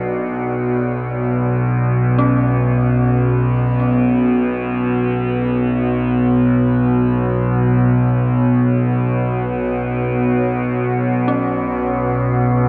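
A cavernous, drenched reverb surrounds this dark ambient drone excerpt in free time, where an up-front, wave-folded drone with moving overtones and a phaser sits low beneath a deep, moody pad holding sustained chords from Bm to F#sus4/B with chorus and shimmer reverb, while from 2.2 seconds an eerie, inharmonic FM bell warbles through quiet arpeggios on C#4 in the background, carried by delay.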